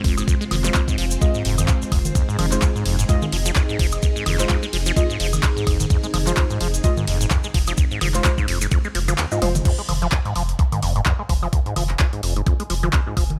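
A squelchy, resonant acid bass riff drives this hypnotic, raw acid house excerpt, its sawtooth tone run through phaser, overdrive, cassette tape and tape echo. Beneath it sit a thick saturated sub bass, a thumpy up-front kick and an overdriven analog drum machine of congas, handclaps, hi-hat, ride, crash, toms and woodblock, all with a swung sixteenth-note feel. A lush vintage string machine holds chords through phaser and ensemble chorus, joined by a grainy cabasa and dark, chorused chord stabs, while the strings, acid line and sub all pump with sidechain; the kick drops out at 9.2 seconds ahead of a drum fill, and from 11.4 seconds a very quiet, warbling lo-fi tape-like pad enters.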